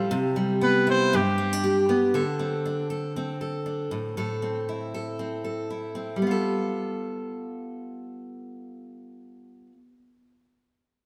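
A fingerpicked steel-string acoustic guitar sits up front through this easy-going, sunny pop excerpt, its old strings giving a woody, full-bodied dreadnought tone as it carries the accompaniment from 0.0 to 9.8 seconds. Early on, a clear trumpet with light vibrato plays a brief solo melody from 0.6 to 1.9 seconds, sounding distant and roomy in a pop style. The groove moves at 118 BPM in 4/4 with a gentle swing on the sixteenths, centered in G mixolydian. The harmony passes from Cmaj7 to G, then to D5 and Am, before settling on G9 at 6.2 seconds. A moderate, lush hall reverb surrounds the parts, and the rough home demo mix gives the piece a casual, unpolished charm, cut from a longer piece.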